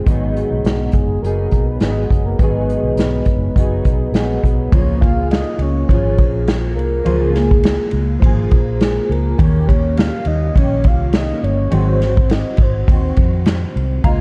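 Laid-back and hazy, this short cut of indie bedroom pop in Db major moves at 103 BPM with a light sixteenth-note swing, as an up-front unplugged drum kit played with bundle sticks, a dark, foam-muted fingered electric bass and a full-bodied fingerpicked jumbo acoustic guitar with analog chorus and vibrato support a round, octave-layered synth lead that enters at 0.9 seconds through phaser, subtle chorus and tape echo, while a pure FM synth bell appears only at 14.0 seconds, all set in a small room with light reverb and the soft grain of cassette tape.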